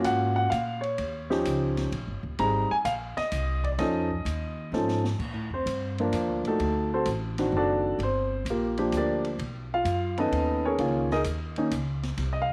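Swinging and warm, this jazz piano trio excerpt moves in a lilting three-beat waltz time with a relaxed swing on the eighth notes. The grand piano carries the melody up front with a warm, natural tone, while the upright bass plays pizzicato underneath, its steel strings giving a woody, up-front presence. The acoustic drum kit sits further back in the studio room, pairing dark ride, crash and hi-hat cymbals with a high-tuned snare and a boomy kick. A short drum fill at 4.7 seconds leads into a piano solo from 5.2 seconds, as the harmony drifts through rich major-seventh, ninth and altered dominant chords before settling on a suspended sonority. A moderate spring reverb and gentle studio ambience lend the trio a cozy, intimate air.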